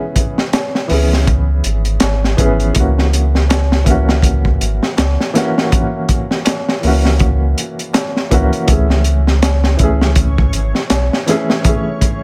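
A swung 81 BPM trip hop groove opens this melancholic, dark excerpt, with a crunchy breakbeat kit up front (punchy kick, high-tuned snare and hi-hat, gritty and saturated with a rolled-off top) and a low-tuned, ringing tabla tucked in the background. A round, deep sine sub bass enters at 0.9 s beneath a soft, intimate felt-muted upright piano, whose vintage tone is coloured by tremolo and tape echo as the chords move from C#m7 to F#7 and on to Amaj7. At 9.7 s a reversed, granular, detuned texture swells dreamily in the background, bathed in its own reverb, while the whole mix sits in a studio reverb.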